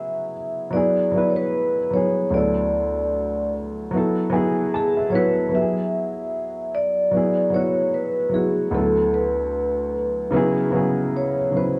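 From the first moment, a soft-mallet vibraphone carries a ringing, airy melody with medium motor vibrato and plate reverb over a dark, woody upright piano that sits up front, slightly detuned with its action noise audible, in this melancholic, hazy hip hop excerpt at a swung 75 BPM, tuned to A4 = 437 Hz, where both parts are muffled by low-pass filtering inside a small room and a cassette-tape sheen as the chords move from E through Bm7/D and F#m9, then the second half from 5.5 seconds returns to E and Bm7/D before closing on C#m7.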